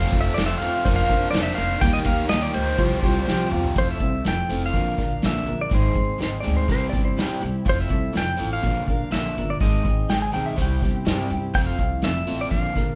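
Folk rock with a heartland rock drive, this hopeful clip from a longer piece moves at 124 BPM in a straight 4/4, passing from F through Bb, Eb and Csus4 before settling into a cycle of Fmaj7, Bb, Ab and C. An up-front pedal steel guitar carries the melody with a twangy, compressed tone, slide and volume swells, while a dark, clean lap steel adds a second line with its own swells from 6.2 to 11.1 seconds. Underneath, a full-bodied dreadnought acoustic guitar is picked in the background, a crunchy, double-tracked overdriven guitar plays a bright riff, and a woody, growly pizzicato upright bass holds the low end. An airy, polished unplugged drum kit played with bundle sticks sits up front with a punchy kick and medium-tuned snare, joined by a faint, jingly tambourine and a worn, slightly out-of-tune reed electric piano with fast tremolo, both of which stop at 3.8 seconds after a piano fill and a drum fill. 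A breathing, nasal harmonium sustains very quiet chords throughout, and the band plays live in one room within a moderate large studio reverb.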